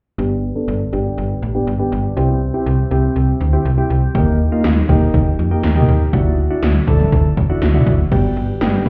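Heard muffled as if through a wall, this short synth-pop clip, cut from a longer piece, sits in a moderately lush hall reverb with a club-like ambience. Soft, round electric-piano-like synth keys open at 0.2 s alongside a snappy, slap-like FM bass with a metallic attack, both up front in the mix. The keys carry chorus, a hint of ring modulation and a low-pass filter sweep, while the harmony moves from G to C, then Eb and Dadd9 before landing back on G at 8.1 s. At 4.1 s, 80s electronic pad drums join with a punchy kick, crash cymbal, and overdriven toms and gated snare drenched in gated reverb. The mood is nostalgic yet upbeat, with a straight feel.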